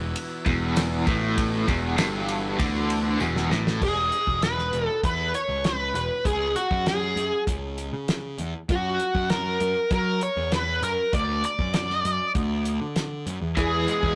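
A bluesy lead guitar, distorted and run through wah and analog delay, takes over at 3.8 seconds and carries the melody through the rest of this trippy, kaleidoscopic psychedelic rock excerpt in E mixolydian, played straight in 4/4 at 98 BPM. Before it arrives, a double-tracked overdriven rhythm guitar with tremolo plays a riff over buzzy, clean combo organ chords with light vibrato set in the background, and the two return briefly at 13.6 seconds. A fuzzy, overdriven picked bass runs the whole length, up front alongside a dry, damped 70s drum kit with a fat snare and tight kick, which rolls into a fill just before the lead enters. A jingly tambourine sits very quietly in the opening passage. The harmony moves from an E power chord through E, C#5, F#, D and back to E. The rough rehearsal-room recording has tube saturation and a moderate small room reverb.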